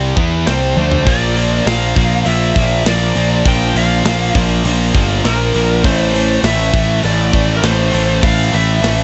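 A straight 4/4 heavy metal groove at 100 BPM drives this epic, relentless excerpt, with a tight acoustic drum kit of tight kick, medium-tuned snare, hi-hat and toms entering at 0.2 seconds and a drum fill at 0.8 seconds. A fuzzy, overdriven picked bass sits up front beneath two bright, distorted rhythm guitars riffing in the background, one high-gain and one tight, while a smooth overdriven lead guitar carries the melody from 0.5 seconds. The harmony moves from Am to Bb and back to Am in a small room with a rolled-off top end.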